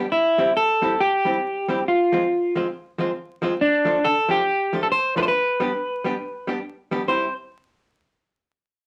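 A swung 4/4 ska pulse at 138 BPM drives this upbeat, joyful passage in C major, cut from a longer piece, moving through C, Fm, Dm and G before returning to C at 7.1 seconds. Up front, a clean, compressed hollow-body jazz guitar picks the accompaniment while a fingered electric guitar, slightly broken-up, carries the melody, both guitars sharing a dark tone. A studio reverb and a layer of vinyl crackle lend the sound a lived-in, record-spun character.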